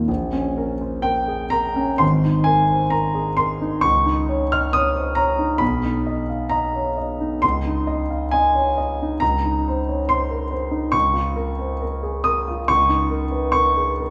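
An intimate, up-front concert grand piano, its action noise audible beneath deep bass and long sustain, carries this mysterious, wistful impressionist classical solo cut from a longer piece, drifting in rubato 4/4 at 59-71 BPM and tuned to A4 = 437 Hz through colored harmonies from Bbm and Abadd9 to Bmaj7 and Dbmaj13, set in a moderate concert hall reverb.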